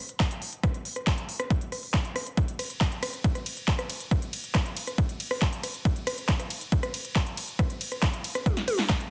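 A layered, overdriven dance drum kit opens this psychedelic, alien trance fragment at 0.1 s, its punchy snare, crisp hi-hats, handclaps, ride cymbal, rim clicks and toms sitting up front in a straight 4/4 at 138 BPM. A distorted electronic kick joins at 0.2 s, thumping forward in the dense, heavily limited mix with little reverb. A drum fill arrives at 8.5 s, just before this short cut from a longer piece ends.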